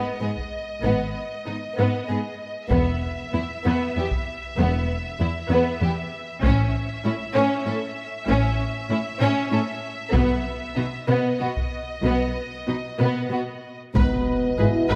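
Strings open this dark, heroic cinematic film score together at 0.0 seconds: a distant, lush violin section carries the high melody with smooth vibrato, while a second violin section plays a focused inner line and a studio viola section adds bowed accompaniment. A huge, dark impact sounds in the background almost at once, and an expressive cello section soon joins on the bass. A taiko ensemble struck with hard sticks follows, its acoustic drums heard in a small room, and then a distant, even double bass section deepens the low end. The music moves in a steady 6/8 pulse over a slow build-up. Near the end, at 13.9 seconds, a dark, soft-attack French horn section sounds up front on sustained chords alongside a tight, bright trombone section set further back. A second background impact lands at 14.0 seconds as the harmony returns to its opening chord, and the whole passage sits in a moderate scoring-stage reverb, cut from a longer piece.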